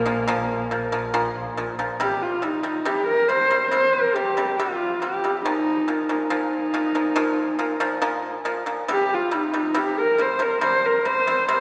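A bowed horsehead fiddle and a bright, focused bowed double bass open together, the bass holding a low Bb drone with vibrato, and a pipa enters at 0.1 seconds with fingerpicked arpeggios. This excerpt of Mongolian folk music moves at a steady 70 BPM in a straight 4/4, with a proud, galloping mood. The fiddle carries the melody up front, its husky, intimate horsehair tone shaped by light vibrato, soft attacks, portamento and a smooth top. The pipa sits up front too, mellow and percussive, while the bass drops away at 2.1 seconds, leaving fiddle and pipa to carry on until the end at 11.6 seconds. The harmony shifts between Bb5 and C5, and a wet concert hall reverb with a long tail gives the performance a spacious, church-like setting.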